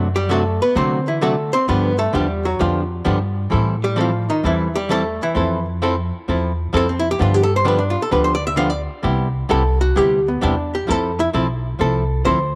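A clean, compressed archtop electric guitar plays accompaniment beside a woody, thumpy upright bass on gut strings, and from 0.2 s a second hollow-body archtop takes a dark, picked, up-front solo in this swinging, down-home western swing passage cut from a longer country piece. The harmony moves through G7, Am7, Fmaj7 and Cmaj7 under the lead guitar, and a moderate spring reverb adds a lingering tail to the sound.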